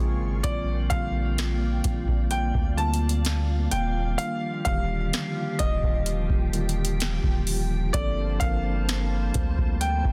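A booming analog drum machine with a deep kick, crisp snare and metallic hats sits up front alongside a long, deep sine 808-style bass in this moody, sensual contemporary R&B excerpt, while a clean tine electric piano accompanies through its built-in speakers, a glassy FM pad with ensemble chorus and sidechain pumping sustains ethereal chords, and a clear, worn grand piano carries the delayed melody from 0.4 seconds over Bb6, Ebmaj9 and Gm11 in a dense, heavily limited modern master.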